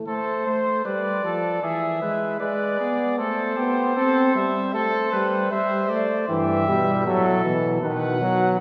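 An up-front, clear trombone carries the accompaniment in this solemn, serious classical canzona for brass ensemble, cut from a longer piece. Above it, a mellow trumpet sings the melody with light vibrato and a smooth top, while a second trumpet weaves an imitative line with a soft attack that sounds distant and roomy. A warm bass trombone joins at 6.3 s to anchor the bass, and the ensemble sits in a wet concert hall, heard from further back with the highest frequencies softened.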